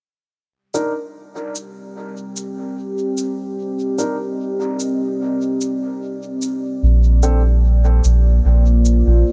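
Woody, boxy upright piano stabs under a filter sweep and dub echo open this spacious, meditative ambient dub excerpt alongside a tape-warm electronic shaker, before a deep, detuned sawtooth pad with chorus, reverb and gritty 12-bit sampler texture rises at 1.7 seconds over a Cm chord, and a round, up-front sub bass arrives at 6.8 seconds as the harmony moves to Bb.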